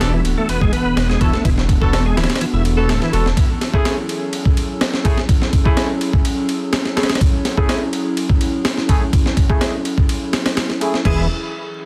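Breakbeat at 125 BPM with a playful, funky feel, this excerpt sets a gritty, compressed sampler-style drum kit with a thumpy kick and high-tuned snare up front alongside a deep, rumbling detuned saw bass, while a warbling, nostalgic lo-fi pad holds sustained chords with chorus, reverb and sidechain pumping, punchy horn stabs move through a filter sweep and dub echo, and a bright, shouting tonewheel organ riff with slow rotary speaker and tube saturation plays until 3.1 seconds before briefly returning at 11.1 seconds, all over E7sus4 moving to F#m7 and resolving to E under vinyl crackle and a dense, heavily limited master.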